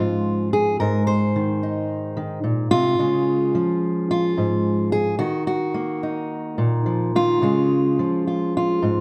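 Folk solo fingerstyle in Db major at 109 BPM and a straight 4/4: a gentle, warm 9-second excerpt in which a fingerpicked steel-string acoustic guitar sits up front with a dark concert tone and audible finger squeak, moving through Db, Ab and Ebm chords across a range of Ab2 to C5 within a moderate, large studio reverb.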